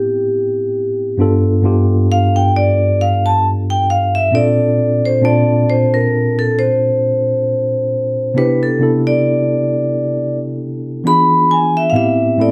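A gently swung 16th-note feel at 67 BPM in 4/4 carries this introspective, late-night R&B fragment, where an up-front, metallic, ringing vibraphone played with hard mallets and its motor off solos from 0.0 to 12.5 s in a boxy small room with plate reverb, over a mellow, clean tine electric piano heard through its built-in speakers, as the harmony moves from Am9 through G9, Bbmaj9, Cmaj7 and E7b9 back to Am9 within a wet studio reverb.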